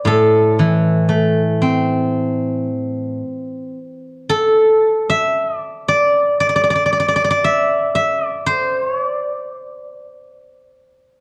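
A solo steel-string zither, played with fingerpicks, sounds from 0.0 to 10.4 seconds, its ringing, silvery tones spanning A2 to E5 in a contemplative, elegant Chinese traditional fragment in the A yu mode, tuned to A4 = 437 Hz. The pace drifts freely around 55-61 BPM in 4/4. The warm, up-front zither sits within a dark production and the wet bloom of a recital hall with a 1.3 s reverb tail.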